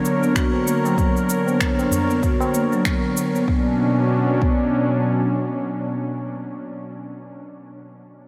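Mystical and warm, this short cut of organic downtempo floats in a dreamy haze of huge ambient reverb. It rests on a smooth, detuned vintage analog pad whose sustained chords warble up front with lush chorus and sidechain pumping, lasting until 6.7 s, while a mellow marimba with soft mallets plays round, low-pass-filtered arpeggios through a diffuse delay, with a filter sweep on it until 3.5 s. Beneath, a deep, tape-tinged electronic kick and produced cabasa and finger snaps keep a lightly swung groove, and a low-tuned acoustic tabla with a short ring sits in the background.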